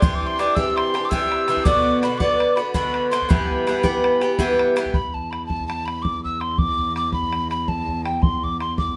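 A breathy, chiffy tin whistle carries the melody from the start of this wild, spirited Celtic slip jig in E minor at 110 BPM, joined by a reedy accordion second line in the background, bright, metallic double-strung Irish bouzouki accompaniment up front, and a tight, damped bodhran heard close and dry. The harmony moves through Cadd9, Bm and Em before the accordion drops out at 4.6 seconds and the bouzouki at 4.9 seconds. From there, the whistle and bodhran continue over a dark, bowed cello drone on a low E, played sul tasto with vibrato, all set in wet studio reverb as though heard from further back in the room in this fragment of a longer piece.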